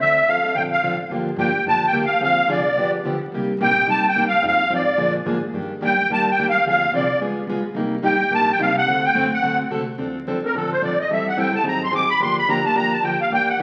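A musette accordion, reedy and shimmering in its wet tuning, leads this short excerpt of fiery, bittersweet acoustic string swing, carrying the melody up front at a brisk 216 BPM in G minor with a lively swung feel. Beside it, a picked plugged-in steel-string acoustic guitar with fresh strings and a parlour body supplies warm accompaniment, moving through jazzy changes such as Gm7, Dm7b5, G7 and Ebmaj7. An upright bass, played pizzicato with a growly, thumpy tone, sits in the background holding down the low end. At 10.0 s the music shifts toward D minor and the accordion takes a solo over Dm7, Am7 and G#7 until the clip ends at 13.6 s. The accordion sounds close-miked and full, while the overall sound carries the crackle of a very old 78 rpm record and the bloom of a large, reverberant studio.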